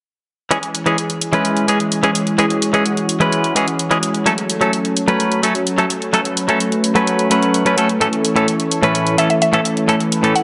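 Euphoric and anthemic, this festival progressive house excerpt moves in 4/4 with a straight feel. From 0.5 s, a thick, detuned unison pad blending sawtooth and square waves holds sustained chords up front, treated with chorus and swept by a filter. Alongside it, a clean, twangy electric guitar, recorded direct and compressed, picks out a bright accompaniment bathed in spring reverb. An electronic hi-hat sits low and layered beneath them, while the harmony moves from C#m to F#m to A. At 9.2 s, a woody, round FM pluck with a mallet-like fast attack and short decay adds a brief high melody, carried by chorus and dub echo, all within a lush hall reverb that gives the mix a spacious, softened top end.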